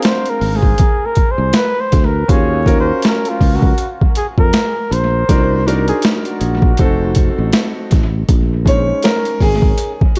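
Jazz-hop hip hop in Bb minor at 80 BPM with a swung 16th feel, mellow and smoky, where a breathy flugelhorn with vibrato and scooped notes carries the melody through analog delay until 7.3 seconds, a woody, boxy upright piano with audible action noise accompanies and then solos from 8.3 seconds, a growly fretless electric bass with subtle chorus enters at 0.4 seconds, and a pitched-down, compressed boom bap sampler kit with a thumpy kick, high-tuned snare and hi-hat sits up front with overdrive and vintage 12-bit sampler grit in an echo-heavy mix.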